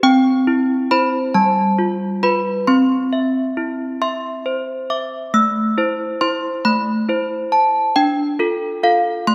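Solo desk bells, clear, ringing and slightly out of tune, sit up front in a wet concert-hall reverb as they play an innocent, tender classical lullaby in C major at a slow 46 BPM in 6/8, moving from C and G7 into a second section on Am and Dm at 5.3 seconds before this short cut from a longer piece ends at 9.3 seconds.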